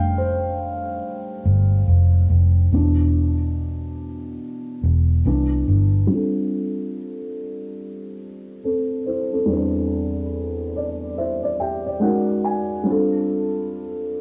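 Nostalgic and mellow, this hip hop fragment, cut from a longer piece, drifts along at 71 BPM in 4/4 with a lazy 16th-note swing. A felt-muted upright piano carries the accompaniment, its soft, boxy tone and thick felt character sitting up front, colored by cassette tape and a low-pass filter. A vintage muted fingered electric bass supports it with a round, dark, foam-muted, amped sound, also up front, until it drops out at 6.1 seconds. The piano plays a solo passage through the opening, then takes on a filter sweep for the rest of the clip and adds a fill from 10.3 to 12.9 seconds. The harmony moves between F6 and Cmaj9 voicings, with a brief F#6 before settling back on F6, all wrapped in light reverb, tape texture and a small room ambience.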